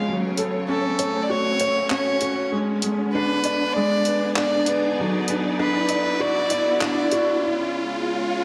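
Hypnotic and cinematic, this piano and strings electronica excerpt moves at 98 BPM in a straight 4/4 and works as a build-up from start to finish, cut from a longer piece. An intimate, felt-muted upright piano sits up front with a mellow riff touched by tape echo, while a single bowed violin floats a pure, sul tasto melody above it, also with tape echo and a filter sweep running across its whole span. Beneath them, a dark, woody studio string section holds lush sustained chords with vibrato, moving from F#m to G#dim and arriving on C#. A deep house drum kit of handclaps and hi-hat enters at 0.4 seconds with an overdriven, layered edge, and an electronic riser climbs in the background throughout. At 7.4 seconds the violin and piano stop for a short break, leaving the strings and riser hanging in the generous scoring-stage reverb.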